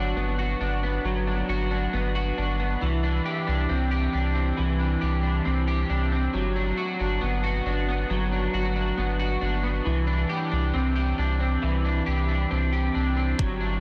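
A slightly broken-up, twangy electric guitar sits up front playing picked arpeggios through analog chorus, tape echo and shimmer reverb over a deep, thick saturated sub bass in this dreamy, blissful dream pop excerpt at 68 BPM, drifting between Gmaj7 and Cadd9 until a thumpy, overdriven gated 80s drum machine kick and hi-hat slip in at 13.4 seconds, all inside a light reverb and a dense, heavily limited modern master.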